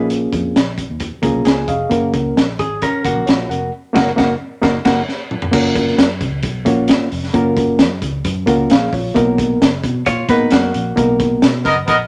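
Uplifting and danceable, this short stretch of uptempo 1960s-style soul moves in a straight four-beat feel. A reedy, worn electric piano sits up front with accompaniment that sounds slightly out of tune through its built-in speakers, adding a brief fill at 1.0 seconds. A dark, compressed hollow-body jazz guitar plays a clean picked riff until 5.0 seconds and returns briefly at 10.1 seconds, while a round, foam-muted fingered bass gives a punchy low end. The crunchy breakbeat kit has a gritty, saturated small-room character with dark cymbals, a high-tuned snare, a punchy kick and toms, plus a fill just before the second section begins at 5.5 seconds. The band hits accents together, and in the closing moments a tight, clear horn section with light vibrato enters on a second line at 11.6 seconds, all set in light reverb.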